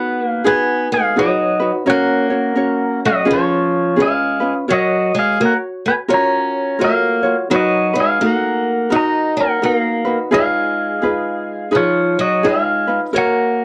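Relaxed and dreamy, this short cut from a longer Hawaiian piece drifts at 85 BPM in F# major with a lazy swing on the eighth notes. An electric pedal steel guitar carries the melody up front, its clean, twangy, compressed tone shaped by fingerpicks, slide and volume swells. A boxy, warm picked acoustic archtop guitar plays a second line beneath it, while a bright, light fingerpicked ukulele picks through changes from G#m7 to F#maj7, Bmaj7 and Fm7b5, all caught in a dry, close 1970s-style studio sound with light reverb.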